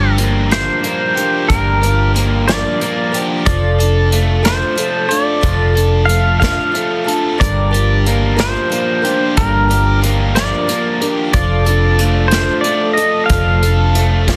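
A dense, heavily limited modern mix with light small-room ambience frames this wistful, dusty folk and heartland rock excerpt in 6/8, where a twangy pedal steel played with fingerpicks carries the melody through analog delay and volume swells over a shimmering, octave-doubled twelve-string acoustic, a bright, double-tracked overdriven electric guitar riff bathed in spring reverb, a dark, round, foam-muted bass sitting up front, and an unplugged drum kit, played with bundle sticks and featuring a punchy kick, that enters at 0.2 s.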